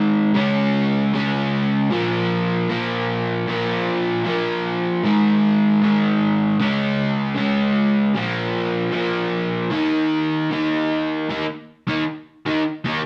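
A wet studio reverb and the feel of a band playing live in one room frame this short, upbeat and rowdy punk cut from a longer piece, where a bright, overdriven semi-hollow electric guitar plays alone and up front at 154 BPM in a straight 4/4, double-tracked and picked across a range from Ab2 to Eb4, moving through Db5, Bb5, Ab5 and Eb5 chords before shifting into a new section at 11.3 seconds.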